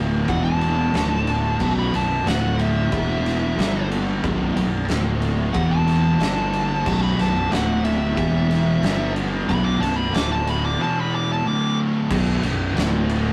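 A straight 4/4 at 91 BPM drives this brooding, heavy stoner and doom metal excerpt in B minor, with two thick fuzz guitars grinding out a distorted riff in the background over E5, D5, B5 and G5 chords while a growly overdriven fingered bass holds down the low end. An oversized low-tuned kit, with boomy kick, fat snare and dark crash and ride cymbals pumping in a big room, joins at 0.3 seconds alongside a picked, distorted fuzz lead guitar solo that stays high until 11.8 seconds before a brief closing section. The rough rehearsal-room recording carries warm saturation and a moderate small-room reverb.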